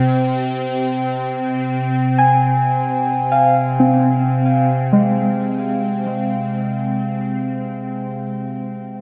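A bright, string-like drone, detuned and shaded with phaser and vibrato, opens this luminous, serene ambient excerpt in free time, tuned to A4 = 435 Hz, while a pure, ethereal glass harmonica fades out in the background. The harmony moves from a C5 to an Fmadd9/C chord at 1.1 seconds, and at 2.2 seconds, muted, felt-like synth keys enter up front with intimate arpeggios coloured by chorus and tape echo. A wet concert hall reverb with a 2.2-second decay surrounds the sound.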